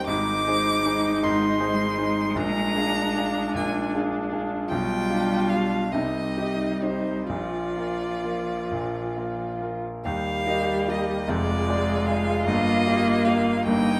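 Elegiac and solemn, this slow romantic classical movement in a rubato 6/8 sets a focused, vibrato-laden solo violin melody over a bowed cello second line and a smooth, even viola, both sounding slightly distant, while an up-front concert grand piano adds brilliant accompaniment with deep bass and long sustain, all heard closely in a moderate recital-hall reverb.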